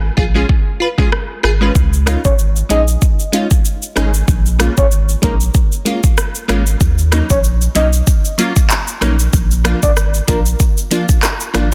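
Dancehall at 95 BPM with swung sixteenths and a sultry, tough mood, built on a round, up-front sine sub bass, crisp detuned wavetable chord stabs with a filter pluck and moving notch, and a produced electronic afro-pop kit of deep kick, hi-hat, handclaps, rim click and shaker, while a dark, full octave-layered synth lead with chorus, tremolo, vibrato and digital delay enters at 2.2 s and ringing acoustic egg shaker and timbales join softly in the background at 6.8 s, all in a dense, heavily limited modern mix with light digital ambience.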